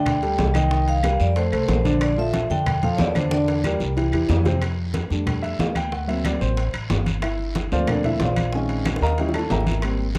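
A sunny, danceable Afro-Cuban jazz excerpt at 184 BPM opens with a metallic, ringing vibraphone melody over an intimate baby grand piano with audible action noise and a dark, woody pizzicato upright bass up front, joined almost at once by bright, low-tuned congas, tight bongos, distant ringing timbales, woody claves and a raspy, vintage-toned guiro. The vibraphone stops at 3.8 seconds, and from 4.6 seconds the piano takes a solo over chords such as F6, D7b13 and Eb7b9, with drum fills around it. The sound is a dry, close 1970s-style studio recording in a small room.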